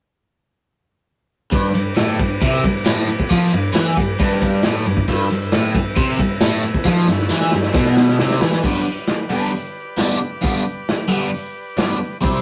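Swaggering and raw, this garage rock excerpt struts along at 135 BPM in a straight 4/4, sitting in G major and cut from a longer piece. From 1.5 seconds a crunchy overdriven guitar drives a picked riff, bright and double-tracked up front with a phaser coloring its tone. A vintage acoustic drum kit sits alongside it, muffled and lo-fi with a rolled-off top, a punchy kick and a medium-tuned snare, working through hi-hat, ride and crash cymbals. In the background a buzzy combo organ holds sustained chords, clean with a light vibrato. A drum fill from 6.9 to 8.6 seconds leads into a second section that runs to 12.4 seconds. The whole thing has the rough feel of a rehearsal-room recording, with a moderate small-room reverb and a dull, capped high end.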